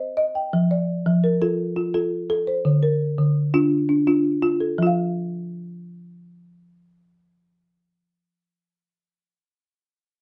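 Southern African traditional music in a straight 12/8 at 113 BPM, this warm, rippling excerpt features a solo folk marimba played with soft mallets, its woody, round, up-front hardwood bars ranging from D3 to G5 over Cm, F and Dm chords in moderate studio reverb, the harmony falling away at 4.8 seconds before the part ends at 8.9 seconds.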